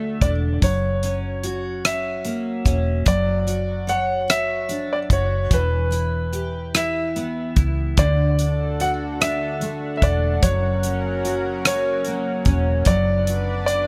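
Romantic and swaying, this six-eight pop ballad excerpt sets a clear, intimate grand piano melody with audible action noise and digital delay over double-tracked picked steel-string acoustic guitar, a dark, round foam-muted electric bass and a dry, damped 70s drum kit of hi-hat, tight kick and rim click up front, all in a small room, before a shimmering retro pulse-width pad with chorus and a slow attack enters at 8.0 seconds.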